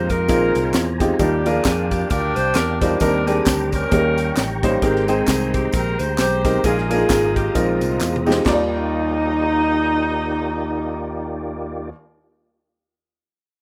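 A mellow, softly attacked saxophone section carries the melody up front in this jubilant, hopeful uptempo gospel tune at 132 BPM in Eb major with a swung feel, over clear, slightly worn grand piano, a lightly overdriven tonewheel organ with slow rotary speaker, chorus vibrato and key click sitting in the background, and a round, amped fingered electric bass, while an airy, polished fusion drum kit with a high-tuned snare and punchy kick, joined by close, dry tambourine, egg shaker and group handclaps, plays a fill at 8.0 seconds before the drums stop at 8.6 seconds and the percussion at 8.7 seconds, all in a rough home-demo mix cut from a longer piece.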